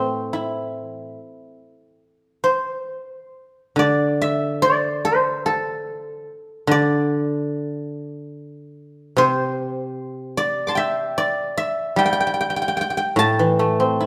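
Chinese traditional solo plucked-string music, this excerpt features a lone guzheng in the A yu mode, played freely in rubato around 66-75 BPM in 4/4. The mood is contemplative and full of longing. The acoustic guzheng, played with fingerpicks, sits up front with a silvery, ringing tone that spans from A2 up to D6. A brief opening passage gives way at 3.8 seconds to a second section that carries through to the end at 14.1 seconds. A moderate reverb, like that of a scoring stage, lets each plucked note bloom and linger in the space.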